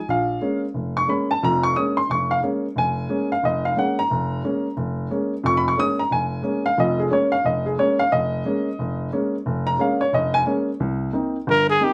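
A moderate studio reverb frames this cool, hypnotic swung jazz fragment in Bb minor at 179 BPM, where a woody, intimate upright piano with audible action noise carries the accompaniment up front over Bbm7 before a shift to Cm7 at 10.8 seconds, and a clear, close-miked trumpet with light vibrato steps forward for a brief solo at 11.5 seconds.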